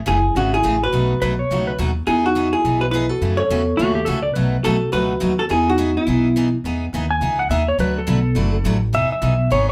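Country western swing with a playful, down-home mood and a brisk swung feel, cut from a longer piece. Up front, a dark, clean hollow-body jazz guitar carries the picked melody while a bell-like tine electric piano adds a bright second line, both dropping out at 6.5 s. A clean lap steel guitar joins as another second line, its warm, compressed slide tone shaped with volume swells. Underneath, a full-bodied dreadnought acoustic guitar with fresh strings keeps up a picked accompaniment, and a woody, thumpy pizzicato upright bass on gut strings sits prominently in the mix. At 6.6 s the music moves into a new section featuring an electric slide guitar solo, with the chords moving through jazzy sevenths such as Amaj7, B7, F#m7 and Emaj7. The band sounds as if it is playing live together in one room, dressed in a short, wet studio reverb.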